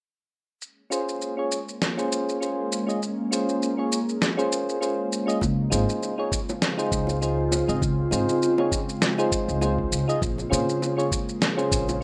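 Soft, round electric-piano-like synth keys with chorus, tremolo and tape echo sit up front from 0.9 seconds in this relaxed, swung sunset chillout excerpt, following a gritty, fat sampler-style snare and shaker that enter at 0.6 seconds. They are joined by an ethereal, airy pad with phaser and ensemble chorus under a filter sweep, and, from 5.4 seconds, by a woody pizzicato upright bass, a thumpy, compressed electronic kick and low-tuned bongos in the background, all in a rough home-demo mix with moderate plate reverb.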